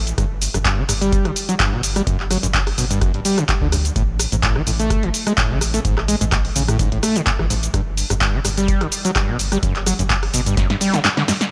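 An echo-heavy mix with light reverb and a digital ambience frames this playful, trippy slice of acid house, cut from a longer piece and running at 127 BPM in 4/4 with a gentle swing on the sixteenths. At its centre sits an overdriven acid bass riff, squelchy and gritty with a resonant sawtooth filter pluck, distorted and up front, coloured further by analog chorus, cassette tape character, dub echo and sidechain pumping. Beneath it, a round analog bass holds a deep, dark, sustained low end built from square, sine and triangle tones with a wave-folded edge, also pumping against the sidechain. The punchy analog drum machine sits dry and forward, with handclaps, hi-hat, rim click, shaker and a punchy snare in studio reverb. An electronic kick drum adds a deep thump that sounds re-recorded in a large room. The whole passage is a drop moving from Gmaj7(no3) to Amaj7(no3) and back, closing on a drum fill at 10.6 seconds.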